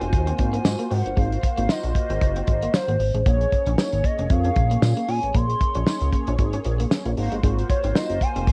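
A light reverb and the character of a home cassette recording frame this slick, funky fragment of early-eighties boogie funk, cut from a longer piece and moving at 115 BPM in 4/4 with a lightly swung sixteenth-note feel. Up front, a damped 70s drum kit gives a fat snare, a tight kick and hi-hat with a dry, acoustic punch, joined at 0.7 seconds by a close, jingly tambourine. Equally forward, a chorused synth bass built from pulse and sawtooth waves sounds glossy and dark, its tone evolving through pulse-width modulation and a moving notch. Above it, mellow synth brass with detuned sawtooth voices, filter sweeps, phaser and vibrato holds round, brassy chords, while a clean, twangy electric guitar riff sits bright and compressed in the background. A smooth triangle-and-sine lead glides through the melody with portamento, vibrato, chorus and tape echo, over harmony that moves from Ab13 to Bbm9 at 3.3 seconds and returns to Ab13.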